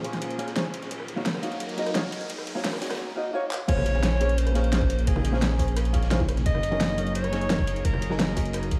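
Dreamy and soulful, this liquid drum and bass cut moves at 173 BPM in Bb minor, shifting between Bbm9 and Gb6 chords. It opens on a build-up where a clean, dark hollow-body jazz guitar with tape echo plays over an airy, breathy pad whose chorus and sidechain pumping sit in the background, while a distant electronic riser climbs. Underneath, a thumpy, pitched-up electronic kick joins an up-front, overdriven pop kit with fat snare, hi-hat, handclaps, rim clicks and crash, plus a dusky breakbeat kit with a high-tuned snare and ride tucked behind. After a drum fill at 3.5 seconds, the drop lands at 3.7 seconds with an impact, as a smooth, gliding sawtooth-and-triangle synth bass with tube saturation and vibrato arrives up front and a bright alto saxophone with digital delay takes the solo melody. Soft-handed, vintage-toned congas and bongos fill in the background, and the whole mix sits in a light, small-room ambience.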